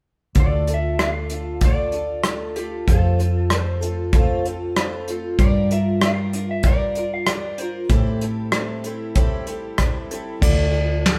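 A live band in one room, lightly touched by reverb, plays this dusty, wistful folk rock and heartland rock passage in D minor at 95 BPM, cut from a longer piece and moving through Dm, F, Gm7 and Am7 before returning to Dm at 10.4 seconds. Up front, a soft brush drum kit with a punchy kick and medium-tuned snare sets a straight 4/4 from 0.3 seconds, while a round, hollow-body short-scale bass holds the low end. A shimmering, octave-doubled picked twelve-string acoustic guitar with woody, boxy old strings carries the accompaniment beneath a slightly broken-up, lo-fi electric guitar melody from a small old amp.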